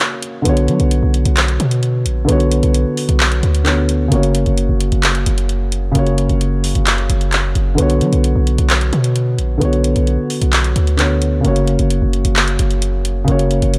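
A dry, up-front mix carries this brooding, hard-hitting trap excerpt at 131 BPM in a half-time feel, set in B harmonic minor. A dark, mellow concert grand piano with deep bass plays through a low-pass filter, moving between Bmadd9 and F# chords, while an electronic trap kit with bright hats and handclaps sounds re-recorded in a small room. After a brief break, a punchy, heavy 808-style bass with a sine body, a noise layer and a fast attack that decays enters at 0.5 seconds.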